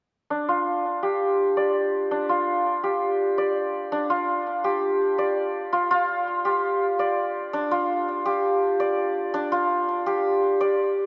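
A lone santur opens at 0.3 seconds with shimmering, hammered arpeggios between D4 and D5 over a G5 chord, sitting up front and softened by a low-pass filter with a delay trailing each stroke. This dark, heavy drum and bass fragment moves in a half-time feel. A lush, wet hall reverb lets the brilliant, ringing strings hang in the air until the santur stops at 11.1 seconds.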